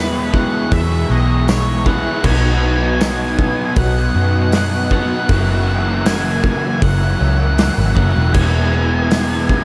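Shoegaze and dream pop rock at 79 BPM in E lydian, hazy and blissful, where a dark octave-fuzz lead guitar with tape echo sings its melody over a shimmering chorused pulse-width pad, a very quiet parlour twelve-string acoustic picking octave-doubled arpeggios, three overdriven riffing electric guitars (one bright and double-tracked, one compressed, one carrying analog chorus), a round foam-muted bass up front, a loose indie drum kit with a punchy kick entering at 0.3 seconds in a pumping small room, and a distant jingly tambourine from 1.5 seconds, all bathed in a huge ambient reverb as the chords move from E through B and F#7 to Emaj7.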